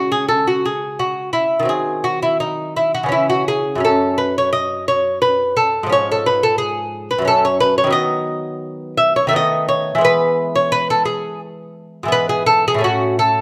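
Close, detailed microphones capture a solo lute up front in a moderate recital-hall reverb, its gut strings bright and delicate, with doubled courses and some octave-doubled strings adding shimmer to the fingerpicked lines. This baroque-style dance in 3/4 moves at 86 BPM with a rubato feel and a radiant, dance-like mood, ranging from F#2 up to E5. It begins in C# minor and turns toward E major at 8.0 seconds, and the 13.4-second passage is cut from a longer piece.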